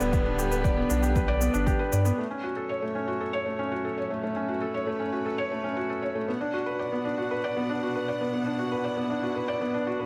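Piano and strings electronica, melancholic and hypnotic, in a steady four-beat pulse, heard as a short cut from a longer piece. A soft, felt-muted upright piano sits up front with an intimate, mellow riff, trailed by digital delay. A deep, round sine sub bass, a punchy layered electronic kick and a small-room shaker softened by low-pass filtering give an opening push that drops out by about 2.2 seconds. A rich, close chamber string section, bowed with vibrato and portamento and pumping to a sidechain, holds sustained chords throughout and fades in from about 2.2 seconds as the harmony moves from G to F#m and then to Bm. A moderate scoring-stage reverb gives the sound a spacious air.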